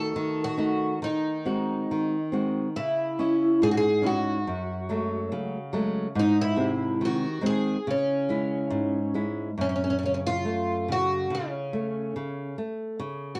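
Loosely rubato over a slow 2/4 at 70 BPM, this mournful, longing fado fragment is cut from a longer piece and opens in C# harmonic minor. A picked twelve-string acoustic guitar carries the melody from start to finish, its shimmering, octave-doubled tone given a subtle chorus and placed up front. Beside it, a fingerpicked nylon-string guitar supplies the accompaniment with a warm, classical voice that is also up front. The harmony moves from D#dim through G#7/D#, C#madd9, F#madd9 and G# to C#m, then shifts into F# harmonic minor at 9.6 s, landing on F#m. Light reverb surrounds the pair, while worn old cassette tape adds a warbling pitch drift that lends the sound an aged quality.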